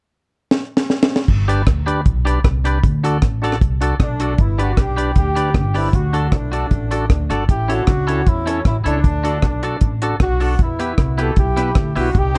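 A dark, warm production with light reverb frames this cheerful, joyful ska excerpt in G major at 155 BPM. It opens with a drum fill from a dry, up-front reggae kit with a high-tuned snare, tight kick, rim clicks, hi-hat and crash. At 1.3 s a woody, pizzicato upright bass enters, joined moments later by a bright, clean, twangy electric guitar with a vibrato effect and a percussive tonewheel organ playing lightly overdriven stabs with key click and plate reverb; from 4.0 s a tight horn section carries the melody with light vibrato and tape echo over chords moving through G, D, A and Em.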